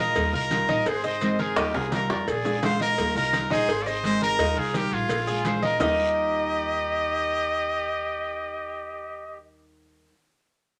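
The recording sits in a moderate studio reverb, with the trumpet close-miked and up front. This danceable Cuban son and guajira, cut from a longer piece, moves at 170 BPM in a straight 4/4 in Eb major, cycling through Ebadd9, Ab and Bb7. A brilliant, punchy trumpet carries the melody with forceful pop-style vibrato, joined by a breathy metal jazz flute with a crisp, chiffy attack on the second line. Underneath, a fingerpicked nylon-string guitar adds bright classical accompaniment, the Cuban tres picks metallic arpeggios on double strings, and a woody, thumpy upright bass plays dark pizzicato on gut strings. Tight, high-tuned cowbell and bongos lead the percussion, with damped, low-tuned congas in the background and very quiet raspy guiro and grainy maracas. A drum fill runs from 1.6 to 3.0 seconds, and the percussion drops out at 5.9 seconds, leaving the winds and strings to carry on.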